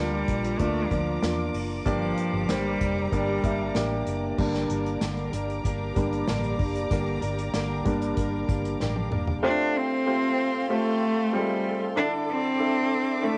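Piano-driven pop at 95 BPM in straight 4/4, tuned to A4 = 444 Hz, with an anthemic, hopeful mood. A rich, bowed solo cello with vibrato carries the melody up front over a polished grand piano, soft sul tasto studio strings, a round, foam-muted vintage electric bass and an airy acoustic kit played with bundle sticks, whose punchy kick and dark cymbals have a cassette tape character like the cello. From 4.4 seconds the piano takes a solo while a full-bodied, fingerpicked jumbo steel-string guitar plays a riff, and a drum fill leads to 9.4 seconds, where bass, drums and guitar stop and the cello returns over piano and strings as the chords move from Bb and Gm to Fadd9 and Dsus2, all with light reverb in a home cassette recording.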